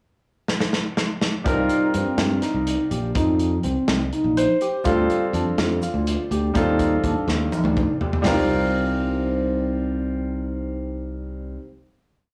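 A drum fill opens this brief, brooding progressive instrumental at 0.5 seconds, leading a pickup bar into a 7/8 groove at 248 BPM in eighths, set in C dorian. From 1.5 seconds a bright, punchy fingered electric bass drives a syncopated riff up front, while an overdriven tine electric piano, barky and gritty through a combo amp with subtle chorus, spins an arpeggiated ostinato. A clear, polished concert grand piano holds quartal chords with deep bass and short sustain, adding a fill of its own around 4.1 seconds as the harmony moves from Cm7 through F69/D to Ebmaj7. The acoustic kit, with its punchy kick, medium-tuned snare, hi-hat and toms in a pumping studio room, plays up front, and a grainy tube shaker sits in the background with an evenly spread pattern. After another drum fill the groove settles onto a final Cm7 at 8.2 seconds, heard through light reverb, a small room and the warbly pitch drift of worn cassette tape.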